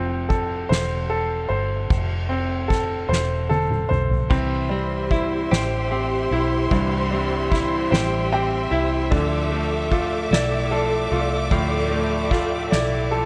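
A bright, woody upright piano and a round, foam-muted electric bass open this tender, heartfelt six-eight pop ballad in C major at 50 BPM, with a soft-mallet drum kit of fat snare and punchy kick joining at 0.3 seconds and playing a fill before dark, lush bowed strings with expressive vibrato and a clean, compressed electric guitar picking arpeggios arrive at 4.3 seconds, while the up-front piano adds its own fill at 7.9 seconds over chords moving from F to C to Dmadd9 in a studio ambience.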